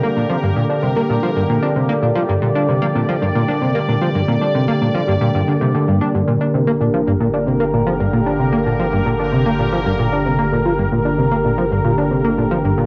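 A straight 4/4 pulse at 113 BPM drives this mysterious, cosmic stretch of sequencer-driven ambient space music in G minor, where a punchy, funky, ring-modulated analog bass riff sits up front with subtle chorus, delay and cassette tape, an airy, detuned sawtooth pad sustains a G minor chord with chorus and cassette tape, a very quiet, mellow round pluck plays arpeggios until 6.1 seconds, and a deep sine sub bass enters at 6.1 seconds, the whole set in a wet studio reverb on a home cassette recording.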